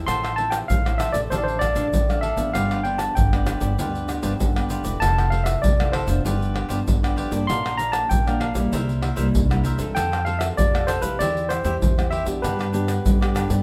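A straight 4/4 samba and choro groove is set by up-front percussion of deep surdo, pandeiro, tamborim and egg shaker played with soft hands in a small room, under a woody, bright pizzicato upright bass. Over fingerpicked, full-bodied classical nylon-string guitar and crisp, picked cavaquinho, a barky, gritty overdriven tine electric piano through a combo amp carries the melody from 0.1 seconds. The chords run from Fmaj7/A through G7, Bb and C7 to F, C/E and G, giving this playful, lively passage its easy pull under moderate studio reverb.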